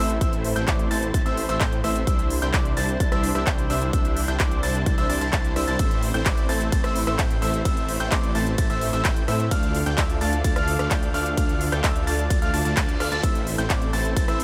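Dry and up front, this powerful, anthemic slice of festival progressive house is cut from a longer piece and rides a steady, straight drive. A big-room dance kit of handclaps, crisp hi-hats, ride cymbal and rim clicks, overdriven and re-recorded in a large room, opens almost at once, joined a moment later by a punchy, layered electronic kick that sits at the front. A full-bodied, detuned supersaw stab carries the riff with a filter pluck, a cassette-tape grain and dub echo, while a thick, beating detuned saw bass adds a menacing, saturated low end. High above, a concert grand piano plays intimate arpeggios with audible action noise and long sustain, echoed in dub fashion, as a lush, bright unison pad holds sustained chords in the background through chorus and phaser. The pad, piano, stab and bass all pump against the kick through sidechain, the harmony moves from Am through Cadd9 and Dm back to Am, and a brief reverse cymbal sounds in the background at 12.9 seconds.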